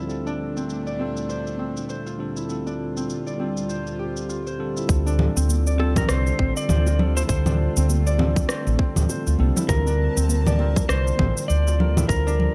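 Set in a light reverb, this hypnotic, warm organic downtempo excerpt in D minor moves at 100 BPM with a swung 16th feel, as a tine electric piano and an airy, breathy pad hold Bbmaj7/D while a ringing, thumb-plucked Celtic harp arpeggiates over overdriven electronic cabasa, congas and rim click. At 4.9 seconds a round, woody fretless bass and a tight, overdriven kick arrive up front on Dm7, at 5.5 seconds soft-handed congas and bongos join in the background, and from 5.8 seconds a dark, clean lap steel carries the melody with slide and tape echo.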